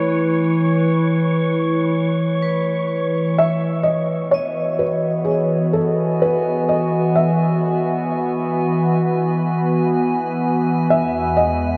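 Peaceful and warm, this ambient piece drifts at 63 BPM in 4/4 with a straight feel in E major, cut from a longer work. A warbling, nostalgic pad with a lo-fi, chorused tone sits up front, holding sustained chords from Aadd9/E into Emaj9, while a bright, metallic vibraphone with a slow motor vibrato rings out arpeggios in the background through a diffuse delay. At the opening, an airy, breathy wind-like noise texture hovers high and dark before dropping out at 3.4 seconds. That is where a soft, intimate felt-muted upright piano takes the melody, its short-sustained notes softened by thick felt and echoed by delay, and an organ-like drone with a detuned, ring-modulated character joins at 5.1 seconds. Bathed in a huge, wet reverb with a long tail and a rolled-off top end, the music settles onto G#m/E at 10.9 seconds.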